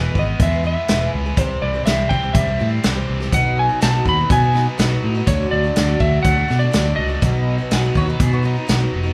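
A slightly broken-up, compressed electric slide guitar carries the melody over a shimmering, octave-doubled twelve-string acoustic, a double-tracked overdriven stack guitar riff and a bright, direct fingered bass in this nostalgic folk and heartland rock excerpt at 123 BPM in 4/4, moving through E, C, B and D. A punchy, natural country drum kit joins at 0.2 seconds, sitting up front with the bass, and a round, double-strung mandolin slips in at 7.7 seconds as a background second line. Light reverb and studio ambience give the mix a rough home-demo feel.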